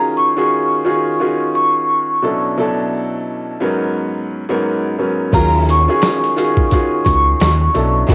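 A ringing, metallic vibraphone melody with medium mallets and a medium motor vibrato opens this short boom-bap hip-hop excerpt, sitting high over a smooth, vintage concert grand piano whose deep bass register anchors the accompaniment up front. The mood is dark and tough, moving at 87 BPM in Eb minor with a swung sixteenth-note feel, as the harmony shifts from Ebm11 to Bm11 and Abm11 before returning to Ebm11. At 5.3 seconds the groove arrives: a compressed, pitched-down sampler-style kit with a thumpy kick, medium-tuned snare and hi-hat, gritty and re-recorded in a large room, joined by a round, punchy, amped hollow-body electric bass playing low and up front. At the same moment a lush, bowed string section adds expressive stabs with vibrato and portamento, tucked in the background and trailed by analog delay, while very quiet maracas sound distant in a large room. Cassette tape coloring, filtering, light reverb and vinyl crackle give the whole piece a dusty home-recorded character with a muted top end.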